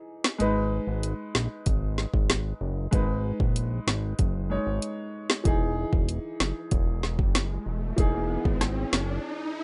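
Sultry and hypnotic, this dancehall fragment sets a clear, boxy baby grand piano with sidechain pumping against an up-front electronic afro-pop kit of deep kick, woody snare, rim click and dark hats, alongside a fat, saturated, detuned sawtooth bass, as the chords move from G#m to Emaj7, an electronic riser enters at 6.6 s and a brief break arrives at 9.2 s, all in a dry, rough home-demo mix.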